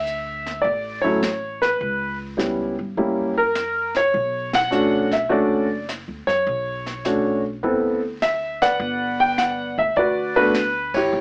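An intimate concert grand piano carries the melody over a woody pizzicato upright bass from the first moment, joined at 0.1 s by a brushed drum kit with dark cymbals and a punchy kick, in this smoky, swinging jazz trio fragment at 103 BPM, where chords such as Dmaj7sus2, F#7b9 and Bm9 give way to Gmaj7 at 8.8 s, the band hits accents together at 4.4 s and 10.8 s, the piano sits up front with audible key action, and the whole is heard through an AM radio tone with moderate studio reverb.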